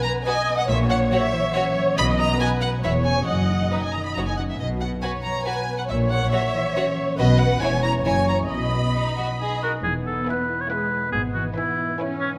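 A moderate scoring-stage reverb gives this short cut from a playful, whimsical film cue in B major a sense of space, its mischievous 3/4 lilt moving at 139 BPM. A close chamber violin section carries the melody with vibrato and gliding portamento, while a rich second violin line, a dark, lush viola section, ringing fingerpicked harp arpeggios, and a dark, smooth-topped bass of cellos and double basses fill out the texture beneath it. Near 9.6 seconds an up-front, vintage-toned oboe enters with a second line as the harmony moves to E.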